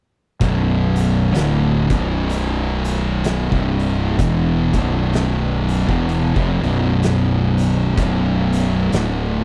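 At 0.4 s, two thick fuzz guitars, a fingered electric bass and an oversized, low-tuned drum kit enter together on a slow, heavy stoner and doom metal riff in B minor at 63 BPM. The swung eighths give it a hypnotic sway. The picked, distorted guitars sit up front beside the growly, overdriven bass. Beneath them, the punchy kick, fat snare and hi-hat ring gritty and saturated in a bright stone room that pumps, until the drums drop out at 9.2 s, just before this excerpt from a longer piece ends at 9.4 s.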